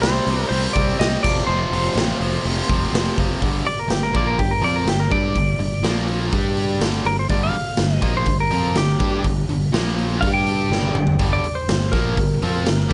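A twangy, compressed lap steel takes a slide solo from 3.4 s over a double-tracked overdriven guitar riff, growly fingered bass and a gritty, saturated garage drum kit in a pumping stone room, giving this brooding, driving classic rock cut in G minor at 123 BPM a drum fill at 10.7 s before it ends at 12.9 s.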